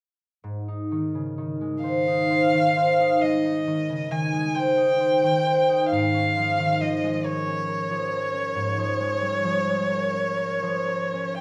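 A ringing, fingerpicked concert harp opens this serene, lyrical fragment of a romantic classical duo, and at 1.8 s a single rich, smooth violin with vibrato takes up the melody, both unfolding in a rubato 12/8 within a wet recital-hall reverb.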